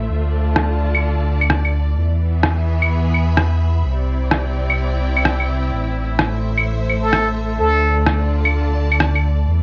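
Heard through the muffled haze of a home cassette recording with vinyl crackle, a dulled top end and moderate studio reverb, this rainy, wistful future garage fragment moves at 128 BPM in 4/4 with a swung sixteenth feel. Lush bowed strings, low-pass filtered and tape-softened, hold sustained chords over Dm, E, Cadd9 and Am beneath a deep, rumbling detuned saw bass with a beating, dark edge. Pitched-down, compressed rim clicks and claves enter at 0.6 s up front, and from 7.0 to 8.0 s a close-miked plunger-muted trumpet adds a jazz-style wah-wah phrase on A4 with scooped notes, light vibrato and analog delay.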